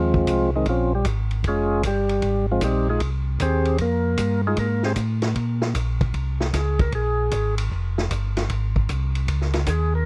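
A dry, close 1970s-style studio sound frames this late-night, smoky soul jazz organ trio excerpt in F minor at 153 BPM in swung 4/4, where a full, percussive tonewheel organ with key click, slow rotary speaker and slapback echo carries the solo melody over a mellow, round tonewheel organ bass on its own slow rotary, while a vintage acoustic drum kit with dark cymbals, a punchy kick and a rolled-off top plays hi-hat, kick, ride and snare as the chords move between Fm7, Bbm9 and Fm9.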